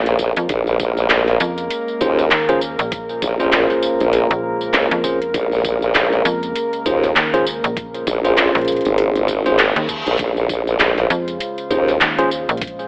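Glitch hop at 99 BPM in Bb minor, funky and gritty, with a 16th-note swing and a telephone-like sound in a light reverb, resting on a single Bbm7 chord. A warbling, nostalgic pad with chorus and sidechain pumping sustains chords beneath an up-front wobbling bass with a formant filter, a snappy FM slap-like bass with a metallic attack, and a dubstep kit of huge snare, metallic hats, handclaps and tambourine over a knocking electronic kick. From 2.0 seconds a bright, bell-like electric piano adds pumping stabs with tape echo, and a reverse cymbal rises in the background at 9.4 seconds.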